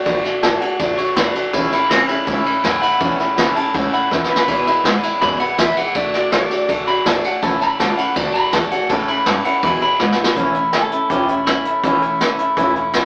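Rockabilly at 163 BPM in A major, upbeat and rowdy, cut from a longer piece: a boxy, up-front picked swing-style acoustic guitar and a woody, thumpy pizzicato upright bass drive under a jazz brush kit with dark cymbals and a boomy kick, while a twangy, slightly broken-up electric guitar through a small old amp carries the melody with a warbly pitch drift, taking a clean solo until 10.4 seconds, all in a rough rehearsal-room recording with wet reverb, saturation and an AM radio sound.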